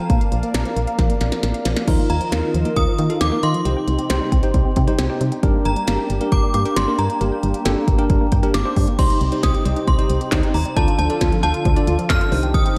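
A straight 4/4 pulse at 135 BPM drives this cool, melancholic synth-pop passage in C dorian, anchored by a glitchy electronic drum kit that sits up front with a deep kick, tiny snare, clicky hats and handclaps, plus a drum fill from 1.0 to 1.9 seconds, over a punchy, round FM bass. A chiming, inharmonic synth melody rings out with ensemble chorus, phaser and tape echo, while a brassy, airy analog pad holds sustained chords and a detuned, wave-folded unison pluck spins arpeggios in the background. A bell-like tine electric piano joins at 1.9 seconds as the harmony moves through Ebsus2, Cm and Gm before settling on Cm and Dm, all set in a lush hall reverb that gives a big arena sound.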